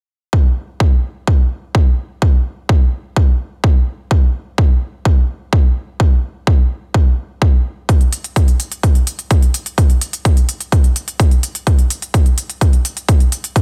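Euphoric and triumphant in spirit, this festival progressive house excerpt drives along at 127 BPM in a straight 4/4. A layered, punchy electronic kick drum carries the whole passage from 0.3 to 13.6 seconds, sitting up front with a tape-warm character and the air of a large room around it. At 7.9 seconds a crisp, layered electronic hi-hat joins, set lower in the mix, with the same tape coloring and large-room re-recording. Overall reverb is minimal, and the master is dense and heavily limited in a modern style. The passage stays within a single section, cut from a longer piece.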